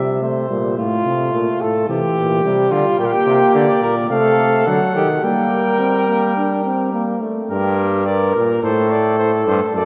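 A classical, imitative canzona for brass ensemble in G minor, this solemn, contemplative passage is cut from a longer piece and moves at 107 BPM in a straight 4/4. The flugelhorn opens at once on the second line, mellow and distant yet up front, with light vibrato, while a close-miked trombone supplies accompaniment and a clear, soft-attacked bass trombone anchors the low end from a roomy distance. At 3.0 seconds the trumpet enters with the melody, its smooth top and light vibrato sitting above the other voices. The trombone drops out at 7.5 seconds as the music shifts into a new section, leaving the trumpet, flugelhorn and bass trombone to carry on toward a rootless Gsus4 near the close. A wet church reverb with a long decay and a dark production give the ensemble a spacious, reverent glow.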